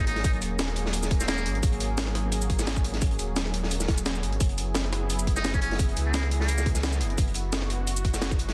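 A buzzy, metal-muted jazz trumpet with dub echo opens this dreamy, lush liquid drum and bass excerpt at 173 BPM over a warbling, detuned sawtooth pad with chorus and sidechain pumping and a deep, sine-like sub bass with octave, as a tight, up-front electronic kick, a gritty, pitched-up sampler-style breakbeat with a high-tuned snare and shaker, and a dark, saturated, high-passed second breakbeat in the background drive the groove, the muted trumpet returning at 5.4 seconds while the chords move from Ab9sus4 to Gb9sus4 at 4.4 seconds in a dense, heavily limited modern master.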